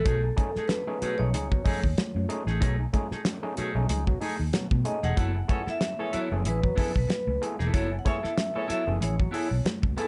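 Lightly reverberant with a softened top end, this sly, cool funk excerpt at 94 BPM sits in F# dorian with a gentle 16th-note swing, moving from B13 to F#m11 at 5.2 seconds. A metallic, ringing vibraphone with slow motor vibrato carries the melody over a dry, damped 70s drum kit with a fat snare and tight kick, a round, punchy foam-muted bass, a clean hollow-body guitar and overdriven auto-wah clav stabs with a stringy, mellow tone. High-tuned congas ring from the distant background, and a clear, punchy horn section adds a vintage second line from 5.5 to 8.8 seconds.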